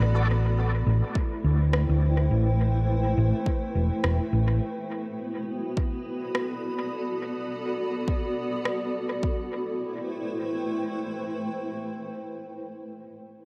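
Echo-heavy and lightly reverberant, this meditative, hazy ambient dub excerpt at 104 BPM in A dorian with a swung 16th feel sets a cloudy, detuned granular pad holding sustained Am7 and Bm7 chords over a dark, round hollow-body short-scale electric bass that plays only until 4.6 seconds, while a deep, layered, overdriven electronic kick runs from 1.2 to 9.4 seconds alongside a quieter overdriven rim click carrying dub echo.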